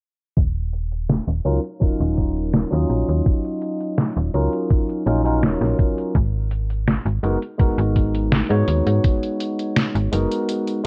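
Vaporwave with a hazy, woozy mood, where a thumpy, sampler-gritty electronic kick and a detuned 8-bit drum machine's hi-hat and medium-tuned snare back a snappy, metallic FM bass, while from 1.4 s a barky, lightly overdriven tine electric piano with subtle chorus and tape echo plays over D#m9 and G#m9 chords, all in a dry, cassette-dulled recording with a filter sweep and a brief break at 10.5 s.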